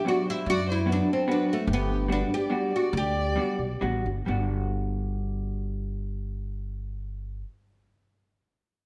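The oud and a dark violin open this short fragment of a charming, whirling musette waltz in 3/4, with the hollow-body jazz guitar sounding beneath them from the first moment. The bright, plectrum-plucked oud carries the melody up front, its fretless double strings giving a woody depth, while the violin, a single bowed player, traces a quieter second line with vibrato and expressive portamento. The clean, compressed electric guitar supplies a dusky accompaniment, and the upright bass joins at 0.5 seconds with thumpy, pizzicato gut strings. The feel is rubato, and the music slows from 1.7 seconds as the harmony moves from Bm to Gmaj7. Oud and violin fall away at 3.8 seconds, leaving guitar and bass to carry on as a new section begins, all set in a moderate recital-hall reverb.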